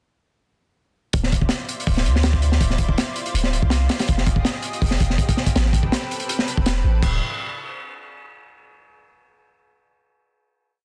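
A heavily chopped, saturated breakbeat with a punchy kick, high-tuned snare and dark cymbals drives this short, frenetic yet atmospheric drum and bass and jungle piece, entering at 1.1 seconds alongside deep, gliding 808-style bass notes and a lush, detuned unison pad carrying chorus and vintage 12-bit sampler grit, as the chords move from Dm9 through Fm9 and Am9 to a final Dm9 at 7.0 seconds, inside a dense, heavily limited modern master.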